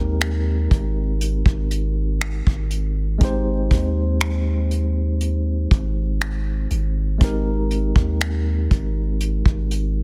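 A soft brush drum kit sits up front in this smooth, dreamy contemporary R&B excerpt, its dark, rolled-off sound suggesting a small room, with finger snaps, hi-hat and a tight kick, and gentle clipping on the snare. Moving at a slow 60 BPM in a straight 4/4, the piece rests on an Abmaj9 chord in Ab major. A long, sustained 808-style bass, deep and sine-like with a fast attack that decays, is also placed up front, ranging from Ab1 to Eb2. Alongside them, at a quieter level, a mellow tine electric piano plays a clean accompaniment between Ab3 and C5, heard as if through its built-in speakers. The music shifts into a new section at 7.2 seconds, all set in studio reverb with a dense, heavily limited modern master.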